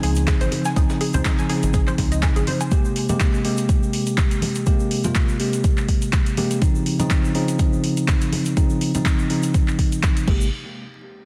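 A dense, heavily limited mix with vinyl crackle and light digital reverb frames this relaxed, soulful deep house fragment, where bell-like tine electric piano stabs carry gritty vintage sampler texture, dub echo, sidechain pumping and a low-pass filter sweep across the whole passage, while a rubbery, hollow square bass pumps beneath until 2.4 s and returns briefly at 10.3 s, a round, detuned analog pluck spins chorused, tape-coloured arpeggios until 2.7 s, and a very quiet, pitched-up breakbeat sampler kit adds compressed snare and hi-hat at the start, all over an up-front deep electronic kick, a layered house kit of metallic hats, handclaps and crash cymbal with small room ambience, a grainy tube shaker in the background and soft, ringing congas played close and dry.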